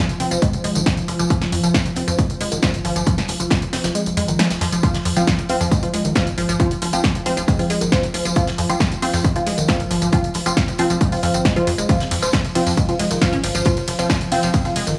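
Sidechain pumping runs through this intense, dark peak-time techno excerpt, set in a light studio reverb, with a tape-warm electronic kick sitting up front and hitting heavy. A squelchy, resonant blip pluck drives the riff from the first second, coloured by phaser, overdrive and digital delay. Beneath it, a tight, sawtooth-edged sequencer bass pushes the low end, while a deep, moody ambient pad drones in the background with chorus and a long, sustained tail. A punchy analog drum machine adds hi-hat, ride cymbal, snare and tambourine, and a very quiet acoustic metal kit with a rolled-off top layers extra hats and snare underneath. The kick drops out at 4.0 seconds, and at 4.8 seconds the drop arrives as a muted, full-bodied dub chord stab joins with phaser and tape echo.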